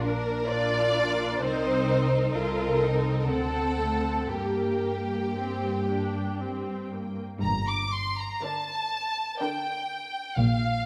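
A rubato 3/4 pulse drifting between 56 and 65 BPM carries this yearning, solemn fragment of a slow romantic movement for string orchestra in G minor, its harmony moving from Bb through Cm7, Adim/C and D7 to settle on Gm. The violins sing a lush, vibrato-rich melody high above while a second violin line sits close and up front beneath it, and expressive, distant violas fill the middle. Focused cellos and even, warm double basses anchor the bass, all within a generous scoring-stage reverb, with the second violins and violas falling away at 10.1 s.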